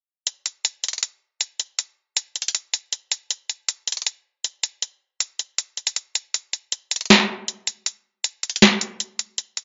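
Hip hop drums, hard-hitting and eerie in a half-time feel, with an electronic trap kit up front from 0.3 to 9.6 seconds, its sharp snare and bright hi-hats sitting in a light reverb and digital ambience, and nothing in the recording reaches above 7.5 kHz.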